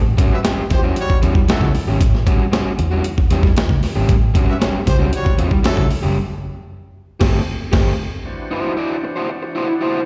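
Gritty, thumpy breakbeat drums sit up front in this strutting, energetic funk cut in A mixolydian at 115 BPM, joined by a dark, round muted bass and a crunchy overdriven guitar with slapback echo, while a clear horn section with light vibrato plays a second line until 5.9 s, a band accent lands at 7.2 s, and a thick tonewheel organ through a slow rotary speaker enters with sustained chords at 8.3 s, the whole heard live through a venue PA with recital-hall reverb.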